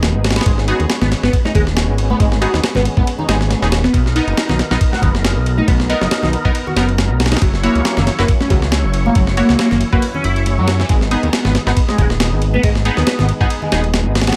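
A swung, compressed sampler-style breakbeat of thumpy kick, medium-tuned snare and ride cymbal drives this gritty, energetic breaks excerpt at 138 BPM in G# minor, with a fat, detuned sawtooth analog bass up front, very quiet acoustic congas, a screaming, guitar-like distorted synth lead entering at 0.4 s with phaser and dub echo, nasal band-passed chord stabs carrying chorus and cassette tape character, and an overdriven tonewheel organ holding chords through a slow rotary speaker and sidechain pumping in the background, all in a small room, with a short break at 10.0 s.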